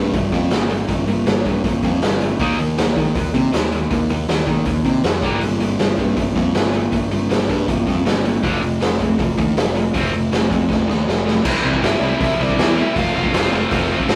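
Punk rock with an aggressive, raw edge, this rough rehearsal-room excerpt drives a bright, double-tracked distorted guitar riff over dark, round fuzz bass and a punchy, up-front garage drum kit with a rolled-off top, until a drum fill at 10.7 seconds hands off to a new section where a hollow-body overdriven guitar melody enters in the background at 11.5 seconds.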